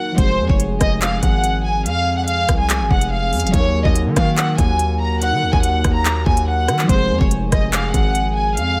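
A half-time drill groove in 4/4 drives this dark, cold hip hop excerpt. At 0.2 s an electronic drum kit arrives up front, with a knocking kick, crisp hi-hats, handclaps and rim clicks, alongside a heavy, saturated 808-style bass whose distortion gives each fast-attack, decaying note an aggressive edge. From the opening moment a close, up-front studio violin section carries the melody, its bowed gut-string tone reedy and period-styled with light vibrato under a low-pass filter. Beneath it, muted felt-like synth keys supply soft, full-bodied accompaniment, darkened by chorus and filtering. Far in the background a glass harmonica holds ethereal, glassy chords with a slow attack and a faint beating shimmer. The harmony moves from F minor to E-flat minor and back, all set in light reverb.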